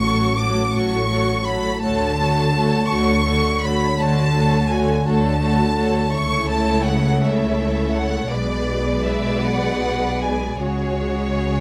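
Classical slow romantic movement for string orchestra, yearning and solemn, moving at 55 BPM in a rubato 12/8 and cut from a longer piece. A rich, up-front violin section carries the bowed melody with smooth vibrato while a second, lush violin section sings an expressive second line. Violas add focused accompaniment, and the cellos sit in the background as the double basses give a smooth-topped foundation, all under harmony that drifts from F#m/A through Dmaj7 to a closing C#sus4 in a moderate large-room reverb captured with close, detailed microphones.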